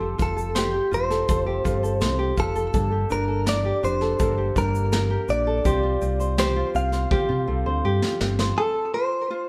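A roomy live-band sound with moderate large-studio reverb frames this sunny, carefree acoustic pop excerpt in F major at 82 BPM, where a bright, clean, direct-recorded electric guitar carries the melody with vibrato and digital delay over fingerpicked ukulele, a round, punchy fingered electric bass, a very quiet woody upright piano with audible action noise, and a vintage brush drum kit that plays a fill from 7.1 to 8.6 seconds as the chords move from Fadd9 through Gmadd9 and Csus4 to F.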